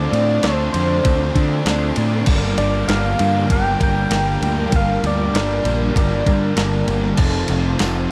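Shoegaze-leaning dream pop rock in G minor at 98 BPM, hazy and melancholic, moving from Dm7 to Gm7 and onto F7 at 7.2 seconds in this short cut from a longer piece. A round, keys-like FM synth lead carries the melody with chorus, vibrato and slapback echo over three guitar riffs: a crunchy double-tracked overdriven part, a slightly broken-up lo-fi guitar through a small old amp with reverse reverb, and a dark fuzz guitar with ensemble chorus sitting in the background. A picked bass and a thumpy, sampler-style 8-bit drum machine sit up front, while a very quiet swirling string machine with phaser holds sustained chords and a faint jingly tambourine enters at 7.2 seconds, all in light reverb.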